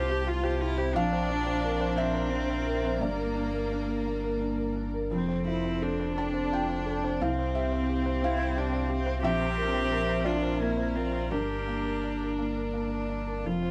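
Close, intimate sound in a moderate studio reverb frames this tender, hopeful neoclassical excerpt for piano and strings, a slow rubato 6/8 at 58 BPM that circles through Csus4, Bbadd9, Gm and F. A felt-muted upright piano sits up front with a mellow, soft tone and audible action noise, while a solo cello bowed sul tasto with light vibrato carries the second line and a breathy, airy viola adds vibrato accompaniment until 13.2 s. A chamber string section holds sustained chords in the background, and a deep, full sub bass with octave anchors the low end.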